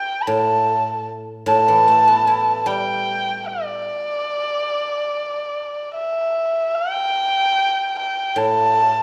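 Festive yet graceful, this brief fragment of a Chinese chamber piece moves in free, rubato time as a single dark erhu, bowed up front with light vibrato, soft attacks and gliding portamento, carries an intimate melody from the start, while a bright, silvery guzheng played with fingerpicks joins at 0.3 seconds with ringing accompaniment beneath, the two heard in a moderate recital-hall reverb before the music turns to a new section at 6.8 seconds.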